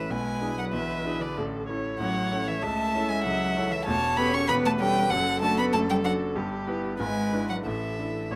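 Spirited and lively, this brief cut from a quick classical-period movement for piano quartet in 2/4 sets an intimate, up-front violin melody, with light vibrato and an airy sul tasto bow, over a soft-attacked cello second line and a vibrato-tinged viola accompaniment, while a clear, smooth concert grand with deep bass and a vintage character supports them under light reverb and close, detailed miking, moving from E7/B to a closing Asus4.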